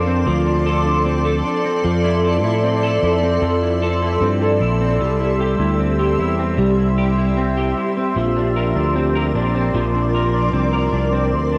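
Dream pop with a hazy, haunting mood, this brief cut from a longer piece drifts through Dm7, Fmaj7, C and Bbadd9 over a straight 4/4. A cloudy, evolving granular pad holds sustained chords high above, while a slightly broken-up, twangy electric guitar plays fingered arpeggios through ensemble chorus and analog delay. A growly, punchy fretless electric bass sits up front underneath, all captured as a home cassette recording with light digital ambience.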